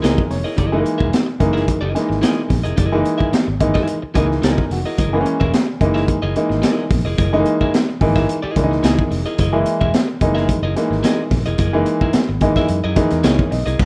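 A crunchy breakbeat drum kit sits up front in this gritty, strutting funk excerpt, its saturated sound carrying dark cymbals, a high-tuned snare and a tight kick under a rolled-off top. A woody upright piano, also close in the mix, punches out stabs over a Gb13 chord and breaks into short fills at the very start and at 4.2, 8.6 and 12.7 seconds. Underneath, a vintage fingered electric bass gives a round, punchy, foam-muted tone through an amp. An electric guitar at the edge of break-up plays picked, compressed accompaniment, its slightly broken-up tone sitting quieter in the mix than the other parts. The room is nearly dry, and the recording has the rough feel of a home demo cut from a longer piece.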